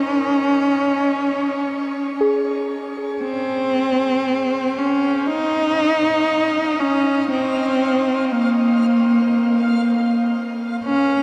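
Moving in a slow, straight 4/4 at 59 BPM, this reflective, serene ambient fragment in Bb minor sets an expressive, nasal cello with vibrato and tape echo up front over a bright, reversed granular swell in the background, while a soft, round pluck with chorus and tape echo sounds Ab4 arpeggios from 2.2 to 3.4 seconds, the harmony moving from Bbm to Bbsus2 at 3.2 seconds inside a long shimmer reverb and a dark production.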